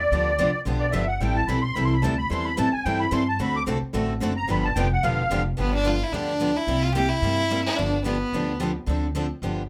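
A reedy, shimmering musette accordion leads the first 5.4 seconds of this lively, charming acoustic string swing in G mixolydian at 219 BPM, before an intense, bowed violin with vibrato takes the melody from 5.6 seconds, all over a thumpy pizzicato upright bass with woody gut strings, a full-bodied picked dreadnought guitar with fresh strings, and a warm, old-stringed concert guitar sitting in the background, held together by the modest ambience of a small room.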